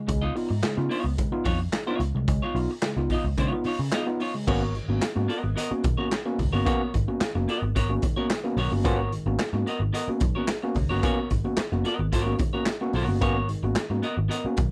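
Driving and funky, this short excerpt of a longer funk piece moves at 110 BPM in G# dorian, shifting from a C#9 chord to G#m11 at 4.5 seconds. A barky, overdriven tine electric piano played through a combo amp punches out stabs, while a clean, picked semi-hollow guitar adds hollow-body accompaniment over a dark, round, foam-muted picked bass. Up front sits a gritty, saturated garage drum kit with a punchy kick, medium-tuned snare, hi-hat, handclaps, crash and dark cymbals in a small pumping room, and the dry mix carries little reverb.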